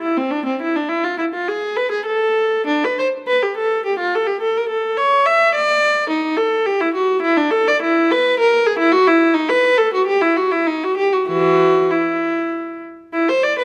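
Grave and flowing, this classical baroque-style suite movement in 3/4 unfolds with a rubato feel for a lone viola, cut from a longer piece. The bowed viola sits up front with a warm gut-string tone, reedy yet smooth at the top, played in period style across a range from E3 to E5 and moving to E minor at 6.1 s. Close, detailed microphones capture the single player within a moderate recital-hall reverb.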